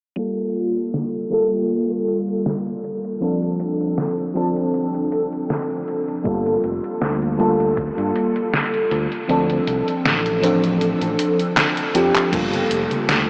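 Vaporwave with a hazy, woozy mood, this excerpt from a longer piece is built around a lush, detuned FM electric piano layered with a soft pad, its mellow tone shaded by phaser, analog chorus and diffuse ambient delay as it moves between Gm9 and Dm7 over a gently swung 4/4. A detuned 8-bit drum machine sits up front with congas, handclaps, hi-hat, a medium-tuned snare and crash, all low-pass filtered and under a filter sweep, before a fingered electric bass with tube saturation and a thumpy, tape-tinged electronic kick join at 6.3 seconds; the kick drops out from 9.3 seconds and a drum fill arrives at 11.6 seconds. The whole mix is soaked in huge ambient reverb, with a cassette-tape, low-passed, small-speaker sound that keeps it dreamy.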